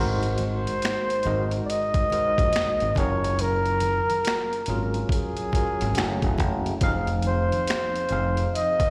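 A breathy, whispered flugelhorn carries the melody up front with mellow vibrato and a soft attack, bathed in plate reverb and slapback echo, in this introspective, soulful neo-soul and R&B excerpt with a swung sixteenth-note feel. Beneath it, a clean tine electric piano heard through its built-in speakers shares the same plate reverb and slapback echo as it moves through Ab7, Gbmaj9, Gbm7 and Fm7, while a bright, growly fingered electric bass sits up front. A gritty, compressed boom bap sampler-style kit with a thumpy kick, high-tuned snare, hi-hat and finger snaps drives the groove, very quiet low-tuned congas add thick-skinned texture, and the whole performance is heard through a venue's PA with recital hall reverb.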